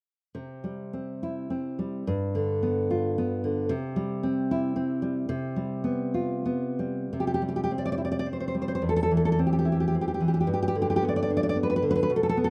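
Nostalgic and sunny, this romantic piece for solo classical guitar moves in a rubato 3/4, drifting between 85 and 117 BPM in C major, tuned to A4 = 443 Hz. A single fingerpicked nylon-string guitar carries everything from 0.3 to 12.5 seconds, ranging from E2 to D5 with a dark, full-bodied, deep classical tone and audible finger squeak. The opening phrase sways between C and G7, settling onto G7 over a C bass, before a second passage from 7.1 seconds moves through C5 and C/E toward G. The guitar sits up front in a rough home demo mix, touched with light studio reverb. The recording is cut from a longer piece.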